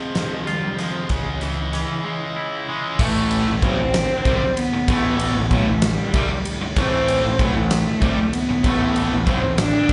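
This angsty, cathartic stretch of quiet-loud alternative rock, cut from a longer piece in A minor at 64 BPM in a straight 6/8, opens with a distant, bowed solo cello singing an expressive melody with vibrato and portamento through analog delay. Alongside it, a twangy, compressed clean electric guitar picks arpeggios bathed in lush chorus, slapback echo and delay, while a high-gain distorted guitar grinds out a riff in the background. A huge arena drum kit, up front with a fat snare, punchy kick, bright cymbals and a pumping hall sound, joins almost at once, and a growling, overdriven fingered bass follows as the harmony moves from F minor to C-sharp minor. At 3.0 seconds the twangy guitar gives way to a raw garage guitar riff with overdrive and slapback echo as the chords settle on A minor. From 6.1 seconds a very quiet, silky vintage string machine adds warbling sustained chords with an ensemble chorus shimmer. 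The whole performance sounds like a live gig heard through the venue's PA, with club ambience and a dark, capped top end.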